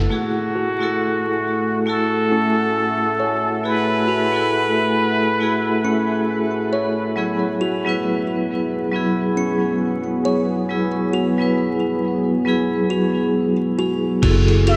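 A plunger-muted trumpet carries the melody up front, its wah-wah tone brilliant and forceful with vibrato, playing from 0.1 to 6.7 seconds in a jazz style before dropping out. This is a brooding, cinematic trip hop fragment in F# minor at 68 BPM, cut from a longer piece, moving from F#m9 to E/F# and back. A hard-mallet vibraphone rings bright and metallic with tremolo and tape echo throughout. A deep, dark ambient pad holds sustained chords under chorus, while a delicate, slightly out-of-tune music box tinkles arpeggios from 0.6 seconds, roughened by 12-bit sampler grit, tape echo and a filter sweep. A woody pizzicato upright bass, heard briefly at the very start, returns at 14.2 seconds, when a muffled, thumpy, pitched-down sampler drum kit with crash and ride cymbals arrives. The dreamy mix is soaked in cathedral reverb, with vinyl crackle and a faint mains hum beneath.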